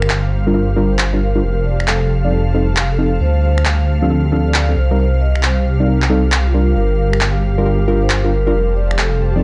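This skippy, late-night two-step garage excerpt in G minor opens at once with every part together at 135 BPM. Dry, up-front electronic finger snaps and handclaps swing over a rumbling, detuned saw bass, while deep, nasal chord stabs carry a filter sweep, chorus and delay through Gm7, F7, Dm7 and Cm7. Further back, a metallic, ringing vibraphone with medium mallets plays the melody through digital delay, alongside an airy, breathy pad and a cloudy, evolving granular pad, all under light reverb.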